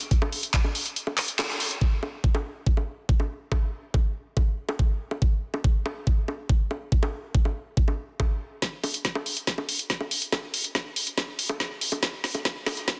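A driving, alien trance passage, cut from a longer piece, opens on an overdriven electronic drum kit of bongos, handclaps, bright hi-hats and a woody snare, joined almost at once by a knocking, overdriven kick that sits up front. The kick drops out briefly around 1.0 seconds while a band accent hits at 1.4, then returns at 1.8 seconds. From 8.6 seconds a drum fill drives a build-up to the end, all wrapped in light reverb and a dense, heavily limited modern master.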